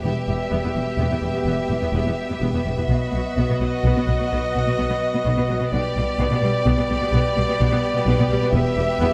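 A rich, focused violin section carries the melody in this majestic, triumphant cinematic excerpt, moving in 12/8 at 85 BPM over an E minor progression through B and G/B, while a distant second violin line and an intense viola accompaniment sit behind it. A present solo trumpet adds stabs, dark French horns with soft attacks and a very quiet, tight trombone section hold sustained chords alongside a smooth, even string section. Lush cellos and an up-front double bass section anchor the low end, all set in a moderate recital hall reverb.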